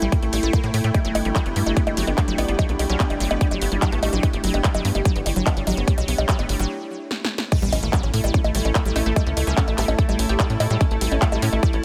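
A punchy, up-front electronic kick and a saturated, wave-folded sequencer bass drive this intense psychedelic trance excerpt, with a detuned unison pluck riff carrying digital delay, an evolving, warbling wavetable pad and an airy, breathy pad pumping under sidechain, and a big-room kit of snare, handclaps, hi-hat, crash, and bongos, while a very quiet metallic FM wobble bass surfaces briefly and a faint electronic impact marks the drop after a short break and drum fill at 7.5 seconds.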